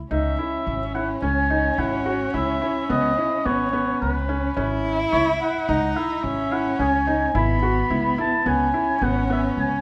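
The recording sits in a moderate recital hall reverb with a 1.6-second decay, giving the small ensemble a natural sense of space. This contemporary chamber piece moves in 5/4 at 108 BPM with a straight feel, pensive yet urgent in mood, and is cut from a longer work, resting on a C#m7 chord in C# minor. An oboe carries the melody from 0.1 s, its tone warm, distant and roomy, with a classical vibrato. Beneath it, a close, bowed solo cello traces a dark second line with expressive vibrato and portamento. A felt-muted upright piano adds soft, mellow arpeggios with a thin felt sound and audible action noise, lending an intimate quality. A pizzicato upright bass on gut strings anchors the low end with a woody, thumpy tone through to 9.8 s.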